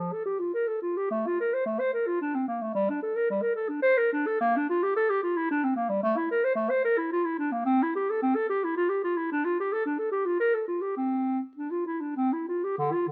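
A warm, vintage-toned solo clarinet opens this short excerpt cut from a longer piece, a classical, baroque-style fantasia in F major with a radiant, serene mood. Played up front in 3/4 with a free, rubato feel around 96-113 BPM, the unaccompanied line ranges from D3 to C5 and sits in light reverb until it ends at 13.1 seconds.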